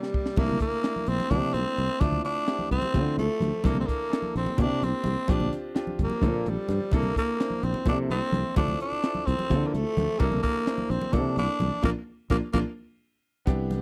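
Electric jazz fusion in a bright, funky 7/8 at 257 BPM in C mixolydian, opening with a short drum fill before the band settles into a vamp that circles C13, Dm7 and Bb6 chords. A growling, breathy tenor saxophone carries the melody up front, set against a brilliant, slightly worn concert grand piano, a crisp kit with a high-tuned snare and tight kick, a growly fretless bass that enters at 0.4 seconds alongside softly played congas in the background. The dry, close 1970s-style studio sound ends on a band accent from 11.8 seconds, with the saxophone dropping out at 12.6 seconds as this excerpt of a longer piece cuts off.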